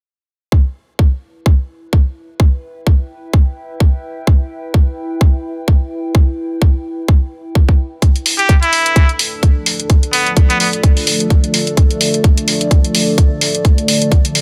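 A nasal, straight-muted trumpet with classical vibrato and digital delay plays a brief solo melody from 8.4 to 10.7 seconds in this bouncy, gritty bass house excerpt at 128 BPM in E phrygian with swung sixteenths, set over a tight, up-front electronic kick from 0.5 seconds, a lo-fi, warbling tape-like pad with phaser and sidechain pumping, warm electronic hi-hats, and a deep, moody detuned sawtooth pad that fades in beneath a dense, heavily limited modern master.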